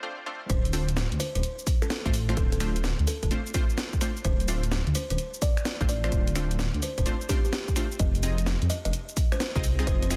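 Bouncy and late-night, this short cut from a longer two-step UK garage track moves at 128 BPM in 4/4 with a swung 16th-note feel, sitting in D minor. It opens with a half-second break where a punchy, full-bodied chord stab with chorus and digital delay plays alone before the drop lands at 0.5 seconds. From there a dark, detuned saw bass rumbles up front with deep, beating weight, while a punchy electronic kick sits equally forward, tape-warm and layered. A house drum kit adds finger snaps, hi-hat, shaker and a cracking snare, its sound re-recorded in a small room. Over the top, a buzzing, woody kalimba picks out a short, smooth melody with digital delay. The harmony rests on Dm7 before shifting to Fm7 at 8.0 seconds, all within a dense, heavily limited modern master with little reverb.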